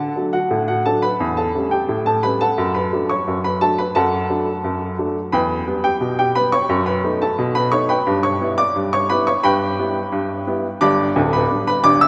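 A woody upright piano with short sustain plays alone and up front through this lively, cheerful ragtime fragment in a straight 2/4, moving from D through E minor to a closing G chord over roughly 12.1 seconds, its warm tone set inside a long, cathedral-like reverb that places it in a church or concert hall.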